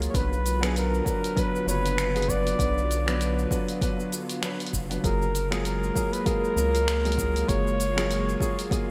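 This sunset chillout fragment moves at 98 BPM in 4/4, with a 57% swing on the sixteenths giving the groove its easy sway, and an electronic kick drum with a deep, tape-softened thump sits under a deep house kit of cabasa, finger snaps and hi-hat treated with gated reverb. A round analog bass, sine-like and up front with a fast attack, holds the low end from the start until 8.4 seconds, while a dark baby grand piano adds intimate accompaniment with audible action noise, short sustain and a touch of delay. Behind them, a soft string machine spreads silky, slowly blooming chords through an ensemble chorus. From 0.1 seconds, a mellow jazz-style flugelhorn carries the solo melody with scooped notes and a smooth top, roughened by vintage 12-bit sampler grit and trailed by delay. The harmony moves from Bm to F#maj9 at 5.0 seconds, and a lush hall reverb and bright 1980s-style digital production wrap the warm, smooth mood of this short cut from a longer piece.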